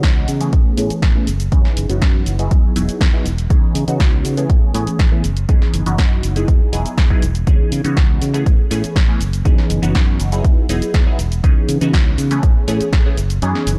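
A punchy, tape-colored electronic kick sits up front in this groovy, funky cut of filtered disco house at 121 BPM, playing until 13.0 s while a small-room analog drum machine adds hi-hat, shaker and snare, its hats and percussion pumping to the sidechain. A detuned sawtooth-and-pulse polysynth comps through C#m9, Amaj9, F#13sus4 and Emaj7 with chorus, phaser and a filter sweep across the full 13.8 seconds, over a bright, growly fingered electric bass; both parts pump under the sidechain through a low-pass filter. Digital ambience lends the production a dark finish.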